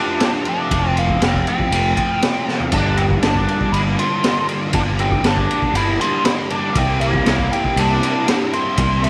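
A straight 4/4 pulse at 119 BPM drives this mysterious, dark psychedelic rock fragment in G dorian, where a bright, biting lead guitar with wah, overdrive and slapback echo carries the melody over a crunchy, double-tracked guitar riff treated with flanger, a raw garage drum kit with a punchy kick, high-tuned snare and gritty, saturated small-room sound that plays a fill at 2.5 seconds, a growly fuzz bass arriving at 0.7 seconds, and a very quiet, shimmering vintage string machine holding sustained violin chords from 2.7 seconds, over harmony moving from F6 through Gm7 to C7 inside a moderate echo chamber reverb.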